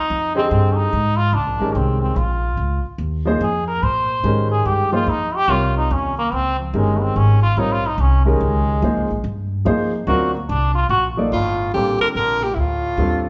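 A buzzy, metal-muted trombone takes a jazz solo from the opening until 11.3 s, when a breathy, scooped alto saxophone enters with the melody, all over a woody pizzicato upright bass and an intimate grand piano with audible action noise, in this cool, intense modal jazz fragment in Bb dorian, swinging in 3/4 at 144 BPM and played live in one room with a wet large-studio reverb.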